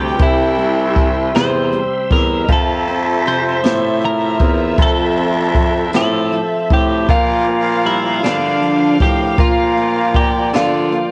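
A clean twelve-string electric guitar carries the melody with tape echo over a dark, sul tasto violin section, a warm grand piano, a bright, reedy tonewheel organ with slow rotary speaker and a raspy, gritty baritone saxophone playing the bass line, before a jazz brush kit with a boomy kick and high-tuned snare enters at 0.2 seconds, giving this swaying, heartfelt six-eight pop ballad excerpt in F major at 52 BPM a dry home-cassette sound as it moves through C, Fmaj7 and Bb6.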